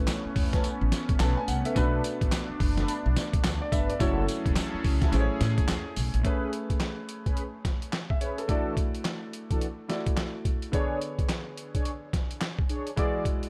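A swung 107 BPM new jack swing groove from a gritty, pitched-down boom bap kit of thumpy kick, snare, hi-hat, handclaps and tambourine drives this bouncy, punchy R&B excerpt, with clear vintage grand piano accompaniment, chorused and delayed round synth brass stabs, and a swirling phased pad and woody, growly upright bass that both drop out at 6.2 s as the harmony moves from Aadd9 through Amaj9 toward E9, all set in a digital ambience.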